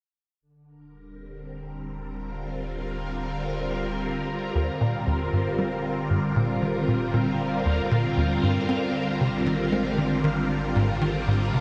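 Cosmic and luminous, this excerpt from a longer piece of ambient, sequencer-driven space music moves at 116 BPM in a straight 4/4, centred on Eb major. A phased string machine fades in from 0.4 seconds with sustained chords, its swirling, warbling sawtooth tone bright and up front, coloured by ensemble chorus, phaser and shimmer reverb. Beneath it, a deep, round sine sub bass enters at the same moment and keeps fading in gradually across the whole excerpt, holding mellow low notes. At 4.5 seconds a tight, punchy sequencer bass enters with a driving riff, its sawtooth and square-wave sound shaped by a filter pluck and a moving notch, with ensemble chorus and tape echo trailing its decaying notes. The harmony rests on Eb before shifting to Abmaj7 at 8.7 seconds, all set in a huge, wet ambient space with a long reverb tail.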